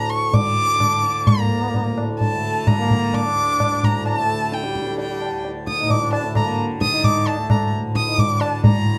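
Hindustani classical music in a meditative, serene mood, this short passage from a longer piece gradually speeds up over its nine seconds. A single bowed violin carries the melody up front with a warm, soft attack, expressive vibrato and gliding portamento, while a softly plucked tanpura holds a buzzing, shimmering drone beneath it. Low-tuned, ringing tabla joins at 0.3 seconds, sounding like an acoustic drum in a live room. At 1.4 seconds a brilliant solo trombone adds a second line in a classical style, set distant and roomy behind the violin. A moderate small-room reverb gives the whole ensemble a close, intimate space.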